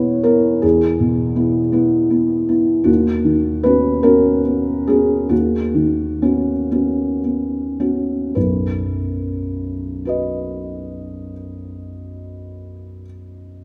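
Neoclassical minimalist piano in B major, tender and peaceful, moving in a rubato 6/8 at 35-54 BPM in dotted quarters, where a solo felt-muted upright piano with a dark, thick-felt, intimate tone sits up front in a moderate concert hall reverb, slowing down from 1.8 to 8.3 seconds as the harmony passes from E to Badd9/D# and settles on B, in a short passage cut from a longer piece.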